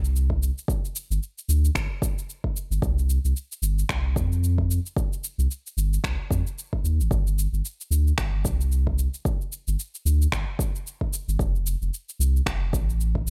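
This short cut from a longer piece has a digital ambience, with a round, sine-based sub bass and a deep kick sitting up front. It is organic downtempo at 112 BPM in 4/4, with a 16th-note swing of 57% giving the groove a gently loping, hypnotic feel and a meditative mood. The sub bass holds down the low end from F1 to F2 throughout the 13.3 seconds, its fast attack and sustained, mellow tone pumping under sidechain compression. An electronic shaker and finger snaps run the full length, produced and tape-tinged, set in small room reverb. The layered electronic kick drum enters at 0.3 seconds, re-recorded in a small room, its tape-warm tone adding an analog character.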